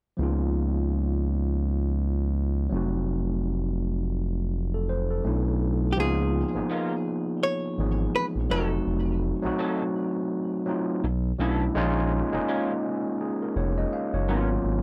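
A barky, gritty overdriven tine electric piano and a smooth, gliding synth bass with vibrato open this soulful, introspective piece of swung R&B at 83 BPM, moving through chords like C#13 and F7b9 before a clean, hollow-body archtop guitar with tape echo takes the melody at 5.9 seconds and a dark, slightly broken-up electric guitar through a small old amp adds a chorused second line from 6.7 seconds, in a dry, close 1970s-style studio recording.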